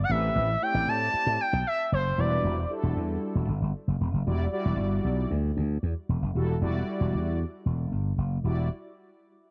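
An expressive, smooth sawtooth lead with portamento, vibrato and chorus sings up front over a punchy, growly slap bass run through an envelope filter as this danceable, slick early-eighties boogie funk clip opens at 115 BPM in E minor, with mellow, round, detuned synth brass carrying chorus, vibrato and a filter sweep entering at 0.1 seconds to sustain Am9 and then Em9 from 2.2 seconds, and after the lead stops at 2.7 seconds the bass and brass carry on in light reverb.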